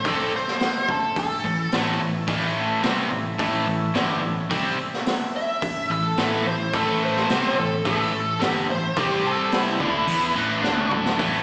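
Blues rock power trio and southern rock with a swaggering, driving mood, heard as a live gig through the venue's PA with a small-speaker sound and recital hall reverb, where a biting, overdriven lead guitar with wah and slapback echo solos up front in bursts, returning at 5.4 seconds, over a bright, double-tracked distorted guitar riff, a very quiet, thick organ through a slow rotary speaker, a dark, round foam-muted picked bass, and a gritty, saturated garage drum kit with a high-tuned snare and boomy kick that plays a fill at 10.6 seconds.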